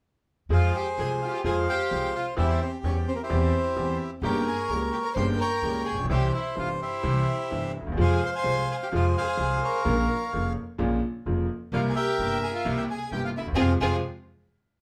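A reedy, dark bandoneon carries the melody up front in this melancholic, tense tango excerpt, its airy tone leading a rubato line over a bowed chamber violin section playing a soft-attack, intimate second line with vibrato and sul tasto. A bright, brilliant concert grand piano with a worn, deep bass supplies the accompaniment, while a woody pizzicato upright bass anchors the low end as the harmony moves from Fm through C7 and back to Fm. The whole band plays live in one room with a wet studio reverb and lands on a shared accent at 13.6 seconds before the fragment is cut off.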